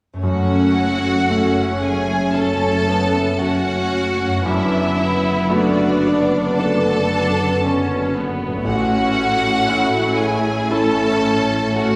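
A wet recital-hall reverb surrounds this cinematic fragment, cut from a longer piece and moving with a rubato, bittersweet feel. A very quiet concert harp rings out fingerpicked arpeggios from the first moment, joined almost at once by a bright, polished concert grand piano with deep bass and short sustain, sitting in the background as accompaniment. A close violin section carries a second line beneath a more distant, focused violin melody up high, both bowed with vibrato and a rich ensemble tone. Distant violas add expressive portamento, while a smooth, even cello section and a soft-attacked double bass section hold the bass in the background and a mellow, roomy French horn section sustains chords. The harmony moves from F#m to D6/F# at 4.5 seconds and settles on A at 8.7 seconds, with every part sounding through to the 12-second cut.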